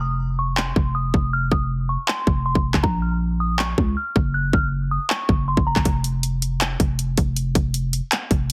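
Dark, brooding trap hip hop in a half-time feel, cut from a longer piece, opening on a delicate, tinkling FM synth bell whose chorus, phaser, filter and digital delay float over a growling, buzzy 808-style bass. The up-front trap kit enters at 0.6 seconds with a hard-clipped kick, bright hats and handclaps, all pushed through overdrive, while the bell drops out at 5.8 seconds and leaves the bass and drums to carry on. A digital ambience and heavily compressed, radio-like sound give the mix a squeezed, in-your-face character.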